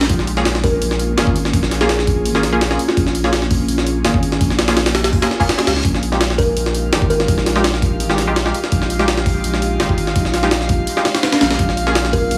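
Drum and bass in a jungle vein, this short excerpt feels nostalgic yet frenetic, driven by a straight four-beat pulse over Bbm7 and Fm9 harmony. Up front, a gritty, pitched-up sampler-style drum kit pounds with a thumpy kick, high-tuned snare and hi-hat, while a thick, saturated sine sub bass holds the low end throughout. Behind them, an ethereal, airy pad sustains mellow chords with ensemble chorus and reverb. A muted, detuned sawtooth chord stab with a filter pluck, chorus and dub echo runs from 0.4 to 12.0 seconds. A woody kalimba plucks short melodic phrases through dub echo, first from 0.6 to 3.2 seconds, set back in a boxy small room. An electronic reverse cymbal sweeps in at 5.3 seconds, and from 6.6 seconds a glassy texture of drifting overtones adds a calm, chorused shimmer high above, all within light room ambience.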